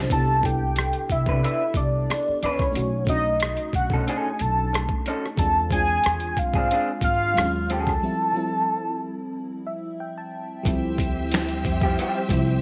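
R&B and neo-soul at a relaxed 91 BPM with a gentle 16th-note swing, this excerpt pairs an up-front, velvety synth lead carrying the melody until 10.0 seconds with a gritty, pitched-down boom bap drum kit of thumpy kick, snaps and rim clicks, a woody pizzicato upright bass, a dreamy chorus-and-phaser FM electric piano with a soft pad layer that takes a fill during the break, a dark, slightly broken-up guitar line with slapback echo, and a distant, lush string section that returns at 10.7 seconds, all moving through rich jazz chords like Cmaj9, E7b9b13 and Dm11 in light reverb.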